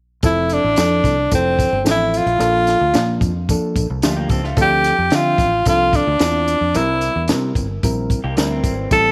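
Uptempo 1960s-style soul with a joyful glow, built on a reedy, clean electric piano, a punchy foam-muted fingered bass, a dry compact cocktail drum kit with a high-tuned snare, and a jingly tambourine sitting in the background. Up front, a breathy, close-miked tenor saxophone carries the melody in jazz style with scooped notes and a warm tone. A slightly broken-up, lo-fi electric guitar with subtle chorus adds a brief picked riff at 4.0 and 8.2 seconds, all under light studio reverb and a faint mains hum in this short cut from a longer piece.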